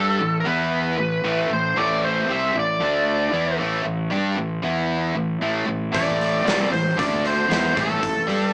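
A straight 4/4 groove drives this brooding, heavy blues rock and southern rock excerpt, cut from a longer piece, with a dark, nasal lead guitar through a parked wah carrying the overdriven melody up front while a bright, double-tracked stack guitar grinds out the riff. A growly fuzz bass sits beneath, and a big acoustic rock kit with a punchy kick and medium-tuned snare joins at 5.9 s. The trio sounds like a band playing live in one room, with moderate reverb and a small-speaker character.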